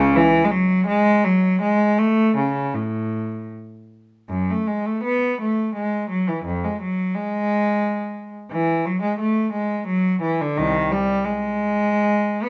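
A lone bowed cello opens this short excerpt of a baroque-style suite movement, its gut-string tone sounding rich and slightly nasal. The mood is serene and flowing, moving in a gentle triple metre at roughly 75-90 BPM with a flexible, rubato feel in A major. The single player uses light vibrato and a period-style approach, giving the line a reedy edge. The cello sits up front in the sound, wrapped in a touch of light reverb. The phrase heard first returns at 4.3 seconds, and the solo line carries on until the fragment breaks off at 12.5 seconds.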